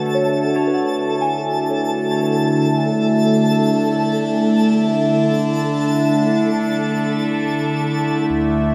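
Floating in free time in D lydian, this serene, weightless ambient excerpt sets an evolving, morphing wavetable pad up front with a filter sweep across its sustained D6 chord, a soft, pure FM bell tracing mellow arpeggios with chorus, phaser and delay in the background, and a twinkling granular texture with octave-up shimmer, before a deep, round sub bass sounds at 8.3 seconds, all bathed in a vast cathedral reverb.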